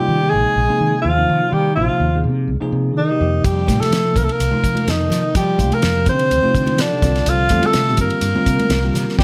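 Electric jazz fusion with a driving, slick feel: a vibrato-laden tenor saxophone carries the melody up front, a mellow trombone with scooped notes sings a second line in the background, a bell-like tine electric piano with phaser comps over suspended chords, a warm, amped fretless bass holds the bottom, and a dry, tight 70s drum kit with a fat snare joins at 3.4 s, followed by faint, ringing congas at 3.7 s, all in light reverb.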